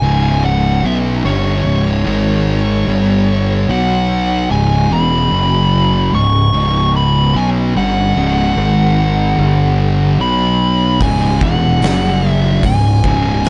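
Stoner and doom metal at a slow, straight 74 BPM, this brooding, hypnotic passage cut from a longer piece circles around C#m with a fuzz lead guitar singing a dark, delayed melody over two thick fuzz guitars grinding out a riff in the background. A growly, overdriven fingered bass sits up front, while a very quiet, flute-like tonewheel organ holds soft sustained chords through a slow rotary speaker. The oversized, low-tuned drum kit enters at 11.0 seconds with a punchy kick, gritty saturation and a pumping big-room sound, all within a dark, dry production.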